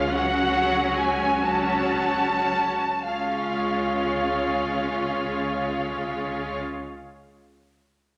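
A wet recital-hall reverb surrounds this brief, serene passage for string orchestra, a slow romantic movement in Db major and 6/8 that moves at 33-50 BPM in dotted quarters with rubato, slowing through the first 3.1 seconds. Up front, the violins carry an expressive, vibrato-laden melody between F5 and A5 over a smooth, even second violin line. Rich, distant violas, clear and focused cellos in the background on Db3, and a double bass section on Db2 support a Gbm/Db chord that resolves to Db at 3.1 seconds, settling the lyrical phrase.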